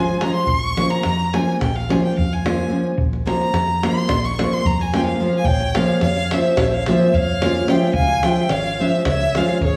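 This Balkan folk excerpt has the energy of a wedding band, fiery and restless, driving along at 217 BPM in eighths in a 9/8 metre with a straight feel, in Bb dorian sharp4. A focused, bowed violin carries the melody with vibrato and takes the solo spot from 0.0 to 5.5 seconds. Beneath it, an up-front nylon-string guitar, fingerpicked on old strings with a woody, full-bodied classical tone, supplies accompaniment, while a round, amped hollow-body short-scale electric bass anchors the low end. A tight, saturated davul keeps the percussion going, and the harmony moves from Bb minor to Db. At 5.4 seconds a breathy bass recorder joins with a tongued second line, its hollow straight tone marked by chiff and lifted highs, as the music moves into its second section, all set in a wet recital-hall reverb.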